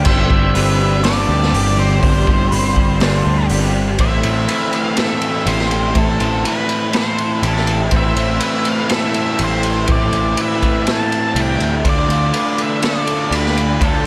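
Brooding and hazy, this short shoegaze and dream pop cut from a longer rock piece drifts through a moderate hall reverb, where a dark octave-fuzz lead guitar melody with analog delay rides over two overdriven rhythm guitars playing riffs (one with reverse reverb, the other lo-fi with ensemble chorus), a twangy, slightly broken-up background guitar playing fingered arpeggios through lush chorus and delay, a round, overdriven picked bass, and a punchy, gritty garage drum kit pumping up front, as the chords move from Gsus4 to Am7 at 4.0 seconds and to Dm at 11.8 seconds.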